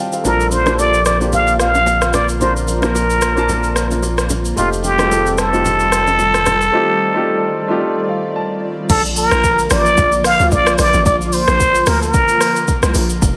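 This soulful amapiano excerpt opens with a baby grand piano fill over an airy, breathy pad whose detuned chords pump gently with the drums and carry a soft chorus shimmer. A smooth R&B kit enters almost at once, with a soft kick, smooth hats, rim clicks, shaker and crash, joined by a deep sine-like sub bass and close, dry congas and bongos tucked into the background. Up front, a plunger-muted trumpet sings the lead with a growling, raspy wah-wah tone, light vibrato and scooped notes in a jazz style, its lines trailed by tape echo. The hand percussion drops out at 6.6 seconds and the bass at 6.7 seconds for a short break, and the piano plays a polished fill before stopping at 8.9 seconds. At that point the drop arrives, with a hollow, bouncy log drum bass taking over the low end beneath the pad, drums and trumpet, all sitting in a light reverb.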